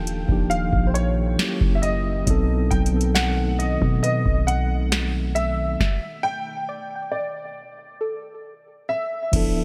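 A booming analog drum machine with a deep kick, crisp snare and metallic hats under gated reverb anchors this late-night, longing contemporary R&B excerpt at 68 BPM, alongside a boomy 808-style bass, a mellow tine electric piano, a very quiet glassy FM pad and an intimate grand piano melody with analog chorus and delay, while a soft, round pluck with chorus and delay enters at 4.0 s and the groove drops into a stop at 5.8 s, all in a bright 1980s-style digital production.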